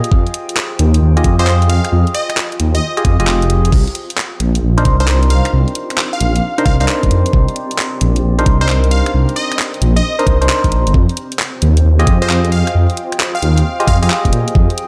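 Skippy and bouncy, this two-step UK garage cut in C minor swings its 16ths at 133 BPM over Fm9 and Cm9 chords, driven by a knocking, tape-warm electronic kick that briefly drops out from 3.3 to 3.7 seconds and a garage kit of bright hats, finger snaps, handclaps and crash cymbal. A deep, rumbling, detuned saw bass sits up front with sidechain pumping, while hollow, organ-like stabs run through chorus, phaser and tape echo, and a punchy, catchy unison lead with a filter sweep enters at 1.4 seconds. Behind them a cloudy, blurred granular pad fades in and pumps softly in the background, all in a dreamy mix soaked in plate reverb.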